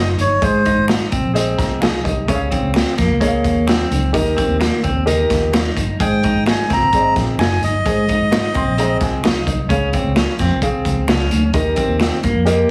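A reedy, breathy melodica opens this uptempo 1960s-style soul excerpt at 130 BPM in Ab major, sounding up front with plate reverb over a clean, picked electric guitar riff and a dark, round, foam-muted fingered bass. A raw garage drum kit enters at 0.2 seconds with a punchy kick, medium-tuned snare and hi-hat, its saturated, gritty tone and rolled-off top pumping in a small room. Very quiet congas with a bright, thin skin join alongside it, and a natural-sounding baby grand piano comes in at 0.4 seconds to accompany, adding fills around 1.4 and 8.3 seconds. Close, dry finger snaps sit faintly in the background as the harmony moves through Ab, Db and Eb, and the nasal, mid-forward melodica returns for a second phrase from 6.0 to 9.0 seconds. The joyful, warm groove carries a heavily compressed, radio-like sound with small room ambience.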